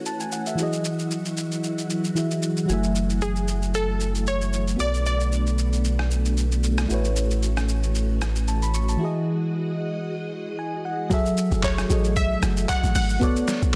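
Warm and relaxed, this amapiano excerpt moves at 114 BPM in E major with a gentle sixteenth-note swing. A soft, dark FM electric piano carries the accompaniment through chorus and phaser, over sustained organ-like ensemble strings that pump against the sidechain. A gritty, pitched-down sampler-style drum kit brings a thumpy kick, medium-tuned snare, handclaps, hi-hat, rim click and shaker. A round sine sub bass sits up front from 2.7 to 9.0 seconds, while a bright, detuned sawtooth pluck with a filter sweep, chorus and tape echo carries the melody in two short passages. After a break where the electric piano plays a fill, the drop arrives at 11.1 seconds, and a deep, percussive log drum bass enters at 11.5 seconds, all within a dense, heavily limited mix with light digital ambience.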